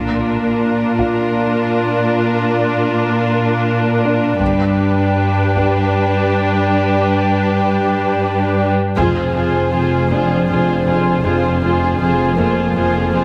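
In a slow, straight 3/4 at 79 BPM, this mysterious, uneasy suspense cue cut from a longer film score in F dorian sets veiled, con sordino string sections (violins carrying a close melody and second line, a rich up-front viola accompaniment, a dark cello bass and a background double bass that surfaces briefly before returning at 9.0 s) over close, dry heavy-stick taiko in the background and a mellow, long-sustaining baby grand piano from 1.0 s, until a ringing fingerpicked harp riff joins with a full-band accent at 9.0 s as the chords move from Bb through G to Fm, all in a moderate concert hall and heavily compressed radio-style sound.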